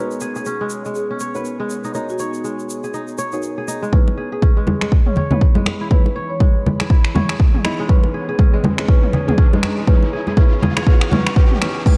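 Afro house at 121 BPM in C# dorian with a swung 16th feel, driving and earthy, this cut opens on a Bmaj7 bed of soft-mallet marimba melody, crisp fingerpicked kora arpeggios with sidechain pumping, a deep nasal chord stab with chorus in the background, and a very quiet ethereal pad, while a grainy egg shaker ticks until 3.9 seconds. At 3.9 seconds the harmony moves to C#m7 and the build-up begins: a punchy overdriven kick sits up front with a layered house kit of crash, finger snaps and toms, close dry congas join, and a filter sweep runs on the marimba, with a round analog bass lying barely audible beneath from 4.2 seconds. A background riser enters at 7.5 seconds, all within a dark small-room production.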